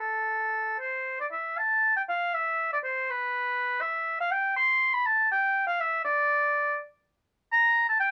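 Introspective and solemn, this short passage from a longer piece is a baroque-style classical fantasia for solo oboe. The oboe plays alone for the full 8.1 seconds, moving freely in 6/8 with a rubato feel. Its tone is clear and sits up front, yet it also has a distant, roomy quality in the light reverb. The line ranges from A4 to C6, and a new section begins at 1.6 seconds. The production leans dark, giving the single voice a grave, inward character.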